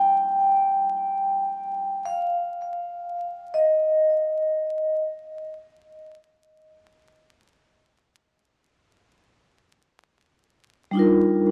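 Floating in free time, this melancholic, nostalgic hip hop fragment is cut from a longer piece and rests entirely on a solo vibraphone played with soft mallets. The vibraphone is mellow, warm and airy, sitting up front with a slow motor vibrato that gives its ringing, metallic tone a gentle waver, and it moves between G3 and G5. It sounds from the opening through 5.0 seconds, then returns briefly at 10.9 seconds to settle on an Ebmaj9/G chord before falling silent at 11.5 seconds. A tape echo trails the vibraphone, while a moderate plate reverb with a long 2.5-second decay lends the space a hazy depth. A layer of vinyl crackle adds a worn, dusty patina that deepens the wistful, nostalgic mood.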